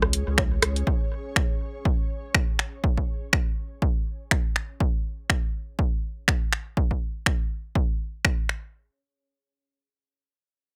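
A punchy analog drum machine leads this clinical, sparse minimal techno excerpt, its tape-warm finger snaps and hi-hat sitting up front with a swung 16th feel over an electronic kick drum that runs from 0.4 to 8.4 seconds. A thick, saturated sub bass with sidechain pumping and an electronic rim click with percussion blips through tape echo sound only at the very start. Meanwhile an ethereal, airy pad, mellow and detuned with ensemble chorus and built-in reverb, fades out by 4.8 seconds, and the room carries little reverb.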